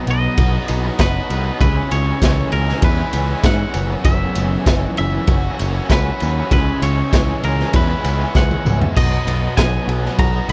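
Wistful yet carefree, this short indie rock excerpt moves at 98 BPM in a straight 4/4 in B major, drifting through Bmaj7, C#m7 and F#7sus4 before settling on B. A bright, twangy electric guitar carries the clean, compressed melody with vibrato and slapback echo, while a reedy vintage combo organ holds heavily vibrato-laden chords very quietly beneath it. Two picked guitars sit in the background playing riffs: one biting and overdriven with analog chorus and slapback echo, the other a raw garage tone with overdrive and tremolo. Up front, a growling picked bass with a direct, amped, overdriven edge anchors the low end alongside a saturated, gritty drum kit with a boomy kick, dark cymbals and a pumping small-room sound, which plays a fill from 8.3 to 9.0 seconds. A jingly tambourine sits close and dry in the background, and the overall mix carries little reverb.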